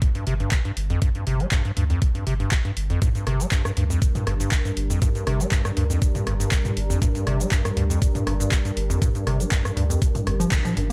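A thumpy, tape-warmed kick and an analog drum machine of handclaps, hi-hat, rim click, shaker and toms open this driving, gritty acid house excerpt, joined almost at once by an up-front, squelchy square-wave acid bass riff with overdrive, tape echo and sidechain pumping over a round sine sub bass, before a dark, detuned sawtooth pad enters at 3.8 seconds with slow-swelling chorused chords, leading to a band accent at 10.5 seconds.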